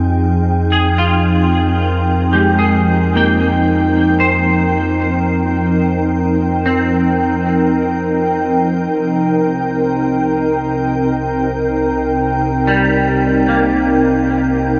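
A glassy, ethereal FM pad holds slow-blooming chords in F minor over a deep, round sub bass that fades out across this free-time ambient excerpt, moving from Fm9 to Cm7 at 8.9 seconds. From 0.7 seconds a bright, clean semi-hollow electric guitar picks arpeggios up front, shimmering with ensemble chorus and trailing into a diffuse delay. The whole mix sits in a huge, dark reverb with a long 8.1-second tail, lending a reflective, melancholic stillness.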